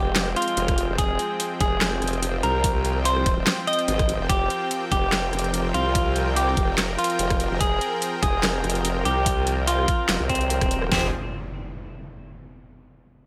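Menacing and chaotic, this heavy wobble dubstep excerpt in F minor rides a half-time 145 BPM groove with a light swing, as a clean picked electric guitar melody with digital delay floats over huge, detuned supersaw chords that pump under sidechain, an up-front formant-sweep wobble bass with chorus and overdrive growls low, two layered electronic drum kits (one with knocking kick, deep snare, handclaps, rim clicks and bright hats, the other overdriven and tape-warm with a towering snare, toms and metallic hats) drive it forward, and an electronic impact lands at 11.0 seconds.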